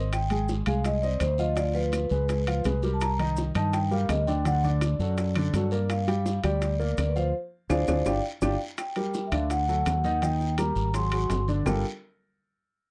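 A straight four-beat Afro-Cuban jazz groove runs through this sultry, sophisticated passage cut from a longer piece, carried by close, dry timbales with a ringing metal shell, round low-tuned bongos and grainy maracas sitting in the background, a raspy guiro and very quiet woody claves. A dark, up-front fretless electric bass and a natural baby grand piano support a metallic vibraphone melody played with medium mallets and the motor off, moving through rich jazz harmony. A drum fill and band accent land from 7.3 to 8.8 seconds before a new section begins, all captured in a dry, close 1970s-style studio sound.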